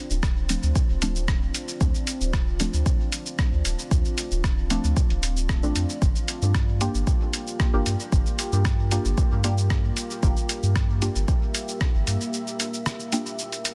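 An up-front, tape-warm electronic kick anchors this hazy, meditative dub techno excerpt alongside a round sine sub bass and a muffled, overdriven lo-fi sampler kit of hi-hat, rim click and shaker carried on dub echo. A soft, nasal chord stab treated with phaser, chorus and dub echo shifts from Dm7 to Gm7 at 6.0 seconds, while a dark, warbling sawtooth pad with a slow attack and its own reverb sustains beneath from the very start. The pad, bass and stabs each pump with sidechain compression inside a dense, heavily limited master with little room reverb.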